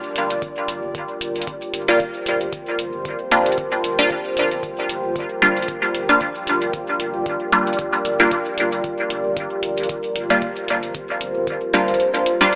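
A moody, detuned pad with chorus and sidechain pumping opens this meditative, hazy dub techno excerpt alongside metallic analog hi-hats; a clean sine sub bass sits in the background, a deep kick arrives at 0.4 s, and from 1.9 s a bright, resonant chord stab with phaser and dub echo cuts through up front, all set in an echo-heavy, spring-reverb mix with an AM radio tint.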